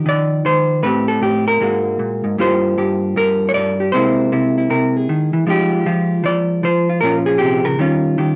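A swung 4/4 at 155 BPM carries this playful, warm solo jazz excerpt in Eb major, tuned to A4 = 435 Hz, with a vintage hollow-body electric guitar alone up front, its clean, picked tone dark and colored by cassette tape. The chords move through Ebsus2, Am9, Absus2, Gm7 and C7alt before settling through Fm7 and Bbm7 to Eb9 at 7.8 seconds, spanning G2 to D5. A moderate studio reverb and the character of a home cassette recording frame the 8.4-second passage.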